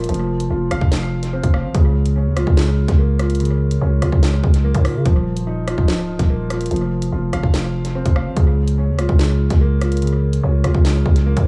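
A dark, worn baby grand piano sits up front in this cold, ominous drill excerpt, its mellow, vintage tone trailing tape echo as it moves through F5, Db6 and Ebsus2 chords. Beneath it, a growling 808-style bass with a buzzy sine core, a fast attack and a decaying tail reaches down to Db1. The electronic drill kit plays in a half-time feel with a hard-clipped kick, sharp snare, bright hi-hats and a rim click, and its tape-colored sound also carries echo. All three parts run together for the full 11.5 seconds, set in an echo-heavy digital ambience with a small room feel.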